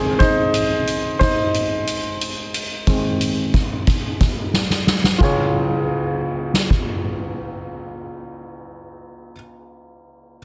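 Hopeful and warm, this short excerpt of piano-driven pop moves at 90 BPM in a straight 4/4, in D-flat major with tuning set to A4 = 444 Hz. An intimate, woody upright piano carries the accompaniment from start to finish, spanning Db2 to Db5, and its action noise is clearly audible up front. A soft-mallet acoustic drum kit enters at 0.2 seconds with dark cymbals, a medium-tuned snare and a boomy kick, its kick and snare touched by soft clipping, and it sits slightly louder than the piano. A drum fill at 4.5 seconds leads the harmony from A-flat to D-flat as a new section begins, and the kit drops out at 6.9 seconds. The kit has a natural hall sound, and light reverb and a dense, heavily limited modern master give the whole a polished, close feel.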